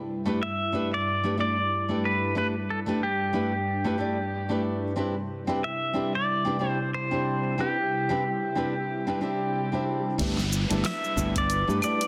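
Smooth and blissful, this sunset chillout fragment drifts at an easy swung pace, cut from a longer piece. An airy, breathy pad holds sustained chords from the start, softened by chorus and phaser while a filter sweep runs across it until 10.2 seconds, and the harmony moves from G6 to Cmaj7 and back. A fingerpicked nylon-string guitar sits up front with a full-bodied, deep classical tone and audible finger squeak, its accompaniment trailed by tape echo, while a bright, clean pedal steel guitar carries the melody with volume swells, slide and its own tape echo. Around 9.3 seconds a background swell and downlifter arrive, and at 10.2 seconds the groove opens up: a growly fretless electric bass with analog chorus, a deep house kit with cabasa, claves, hi-hat and a fat snare, and a tape-toned electronic kick, both drum parts set in studio reverb. A moderate plate reverb surrounds the whole, and the master is dense and heavily limited.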